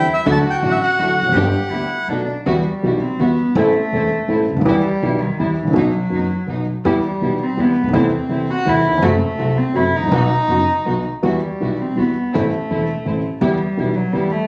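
Nostalgic and passionate, this rubato tango fragment in 3/4 opens with a reedy, smooth bandoneon melody that stops at 2.1 seconds, after which a nasal, gut-string bowed cello in period style takes a solo from 2.5 seconds, set over a mellow concert grand piano with deep bass and short sustain, distant, vibrato-rich chamber strings playing dark stabs, and a woody, thumpy pizzicato upright bass, the whole captured on a phone in the room with moderate studio reverb and compression.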